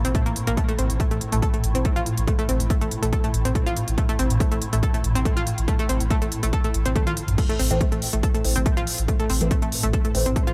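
A dry-sounding cut from a longer driving peak-time techno track in A minor at 141 BPM, with a hypnotic pull as an overdriven, heavy electronic kick anchors a round, sine-toned sub bass, a bright sawtooth-and-square analog pluck riff with chorus and dub echo, and a swarming, detuned granular drone in the background, all breathing with sidechain pumping. An overdriven techno kit adds smooth hi-hats, toms and crash cymbal, with a drum fill at 7.0 seconds. At 7.7 seconds a muted, detuned dub chord stab slips in behind the mix, its moving notch, phaser and cassette-tape grit lending a mellow, evolving edge.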